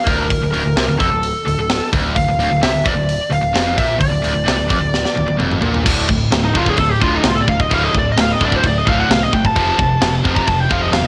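A straight, relentless 4/4 drive sets this dark heavy metal excerpt in motion, with a tight acoustic drum kit up front (high-tuned snare, tight kick, crash, hi-hat and toms with a rolled-off top) under a growling, overdriven picked bass. Two bright distorted rhythm guitars play low riffs, one overdriven with a cassette-tape grit and the other very quiet, while an up-front high-gain lead guitar carries the melody with tape echo. After a drum fill from 4.9 seconds, the music turns to a phrygian colour at 5.9 seconds as the lead breaks into a solo, all within a dry, lo-fi home cassette sound.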